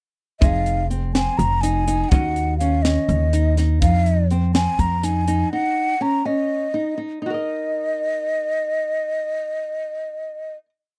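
A tense, driving progressive instrumental in 7/8 at 247 BPM opens at once with an up-front, hollow concert flute carrying a vibrato-touched, tongued motif over a fingerpicked flamenco guitar ostinato with audible finger squeak, held spread chords from a dark, clean hollow-body jazz guitar in the background, woody gut-string pizzicato upright bass tied to the tight kick, and a polished fusion kit with a high-tuned snare. The jazz guitar drops away at 3.8 seconds and the bass and drums stop at 5.4 seconds, leaving the flute and flamenco guitar to ring out a final chord from 7.2 seconds. The Eb dorian harmony moves between Fm7 and Ebm7, and the dry, close studio sound has a 1970s character.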